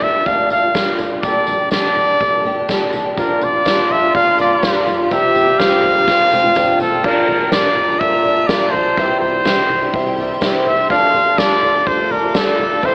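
A straight 4/4 pulse from a soft-mallet drum kit with a boomy kick and dark cymbals, a faint jingly tambourine and a woody pizzicato upright bass carries this hopeful, uplifting indie folk fragment, its arrangement building as a drum fill at 6.1 s leads into a new section at 7.0 s. Up front, a classical-style trumpet sings the melody through an analog delay over a mellow concert grand piano with deep bass and a boxy, shimmering twelve-string acoustic guitar, while a fingerpicked plugged-in steel-string acoustic guitar is barely audible in the opening moment. A nasal, muted French horn with vibrato adds a second line from 3.2 s, soon joined by an icy, airy, crystalline glass pad with chorus and built-in reverb, all heard through a lo-fi cassette and AM radio character in a reverberant studio space.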